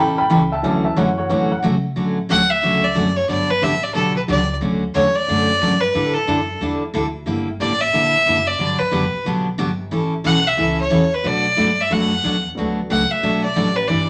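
Swinging and playful, this western swing and country excerpt moves at a brisk 181 BPM in D major with a loose swung eighth-note feel. It opens on a short solo passage from a dark, mellow upright piano, woody and intimate with its action noise audible, before the piano drops out and returns briefly at 12.5 seconds. A bright, full-bodied picked steel-string acoustic guitar sits up front and carries the accompaniment throughout, while a pizzicato upright bass adds a thumpy, woody bottom end lower in the mix. At 2.3 seconds a clear fiddle takes the melody, bowed by one player with light vibrato and a biting yet airy, earthy tone heard close and up front. The harmony drifts through jazzy colours such as Dmaj7, Gmaj7, A7sus4 and Gm6, and a wet studio reverb gives the small group a sense of shared room.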